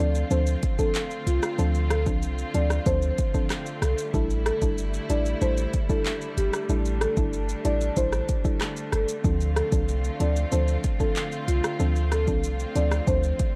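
Dancehall with a tough, hypnotic feel, where a woody soft-mallet marimba carries the melody through tape echo over a dark, round chorused pluck, smooth bowed strings pumping under sidechain, a deep, boomy 808-style bass and an up-front electronic afro-pop kit of handclaps, crisp hi-hats, deep kick, rim clicks and shaker, all in a dry, gritty digital ambience as the chords move from Dm7 to A7sus4 at 4.1 seconds and back at 9.2 seconds.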